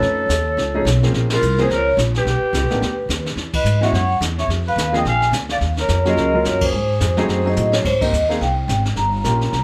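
A swung 4/4 groove rides on brushes and dark cymbals from a studio-room drum kit with a high-tuned snare and boomy kick, while a woody, pizzicato upright bass sits up front, giving this short cut from a longer small-group swing and bop piece a sophisticated, playful air. Close-miked vibraphone played with soft mallets carries the melody with a mellow, ringing tone and medium motor vibrato, and a distant, growling trumpet adds a raspy second line with scooped notes until 7.5 seconds. An intimate grand piano with audible action noise and deep bass comps through altered dominant and minor-seventh changes beneath light reverb, with band accents punctuating the tune and a drum fill at 7.6 seconds leading into a new section at 7.8 seconds.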